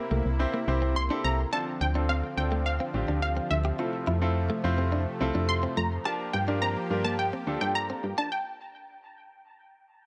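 Summery and upbeat, this pop excerpt moves at 106 BPM in a straight 4/4, with a clear, polished concert grand piano accompanying and a soft, detuned supersaw holding chords over a punchy, round FM bass up front, while a bright, direct-recorded clean electric guitar plays a riff with subtle chorus. From 1.0 seconds a lush, detuned unison pluck carries the melody high above with dub echo, and a build-up from 1.5 seconds runs through Dm7, Fmaj7 and Gm7. By 8.3 seconds the other parts have stopped, leaving the pluck's echoing line alone until 10.0 seconds, all in a light reverb.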